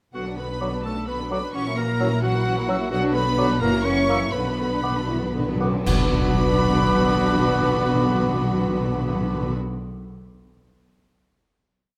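In a 6/8 at 77-88 dotted-quarter beats per minute, this short, restless B minor piece for symphony orchestra sets a lush, focused violin section on the melody, doubled at the octave by a rich cello section, a mellow, distant clarinet and a cor anglais, while background second violins and very quiet dark violas rock a two-note figure over sustained, woody double basses. From 0.6 s an airy silver flute, a bassoon and a smooth-topped French horn section add short accented chords and held harmonies, and dry clash cymbals, cymbal swells and bass drum strokes join at 2.9 s as the tempo slows. Hard-mallet timpani fill and roll into the full-band accent on the final chord at 5.9 s, giving this urgent, dramatic piece an emphatic close in a detailed sound with light reverb.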